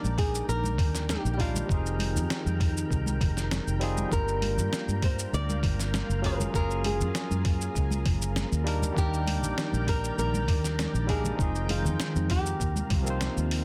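This sunset chillout piece opens with a barky tine electric piano, bright and clean through a combo amp with tape echo, over a lush, warbling unison pad that carries sustained chords with chorus. It moves at a smooth, blissful 99 BPM in a straight 4/4. The chords run Ebmaj7, Fm9, Gm7 and Gbmaj9 before returning to Ebmaj7 and Fm9 and settling on Eb69. A dark, fingerpicked flamenco guitar enters at 0.2 seconds to carry the melody through a digital delay. At the same moment a gritty, thumpy electronic kick drum comes in, and it is the loudest part. A dusty soul sampler-style kit adds cabasa, hi-hat and a fat snare, very quiet congas with a thin skin add light percussion, and a round, foam-muted fingered bass holds the low end up front. A breathy, wind-like noise texture sits far in the background with its own reverb, all set in light digital ambience and a dense, heavily limited master.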